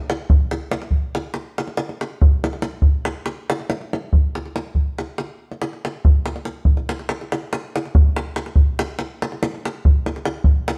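Virtuosic and fiery, this excerpt of Balkan folk drives along at 282 BPM in eighths, with a straight 9/8 feel. A lone davul carries the whole passage from 0.1 to 10.8 seconds, its tight, acoustic tone sitting close, dry and up front. It is set in a moderate stone room with a 1.0-second reverb, capturing a band playing live together in one space.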